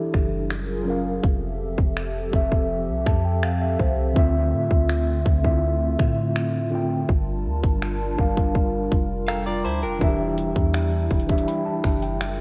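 A straight 4/4 trap kit of finger snaps, metallic hi-hats and a hard-clipped kick sits up front over a deep, round 808-style bass, setting a moody, longing contemporary R&B groove in this fragment of a longer piece. A mellow tine electric piano carries the chords from Em7 through F#maj7, Fmaj7, Dm9 and Gm7, adding a fill at 2.7 seconds, while a hollow, flute-like pad with chorus glows softly beneath it. A clean, direct-recorded electric guitar drifts in with brief arpeggios through tape echo at 9.3 seconds, and the cassette-tape home recording, cut off above 8.0 kHz with light digital reverb, lends the whole piece a hazy, intimate feel.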